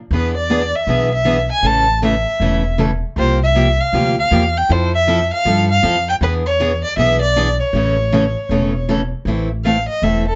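Fiery and virtuosic, this brief fragment of acoustic string swing in the jazz manouche style races at 157 BPM with a swung feel, as a smooth, bowed violin with vibrato carries the melody up front, a picked parlour steel-string guitar with fresh strings comps through chords such as E7, C7sus4 and Fmaj7, and a woody, thumpy pizzicato upright bass on gut strings anchors the low end, all in a dark, warm production with light reverb, and at 9.3 seconds the violin breaks into a solo.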